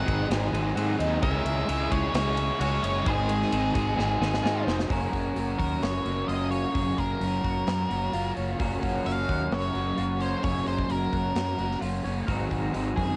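A straight 4/4 pulse drives this wistful, blissful shoegaze and dream pop rock excerpt, cut from a longer piece, with a big rock drum kit in a roomy space: punchy kick, snare, hi-hat, ride and bright cymbals, plus a drum fill from 4.0 to 4.9 s. A growly fuzz fingered bass sits up front beneath a dark, distorted octave-fuzz lead guitar melody and a compressed overdriven guitar riff with reverse reverb. The background holds twangy twelve-string arpeggios with lush chorus and delay, a hollow-body overdriven semi-hollow guitar riff with chorus, and a double-tracked overdriven guitar with tremolo that stops at 4.9 s. Harmony moves from Ab7 through Dbm and Ab into a long Gbmaj7 stretch, all coated in cassette-tape grit and light reverb for a homespun, dreamy haze.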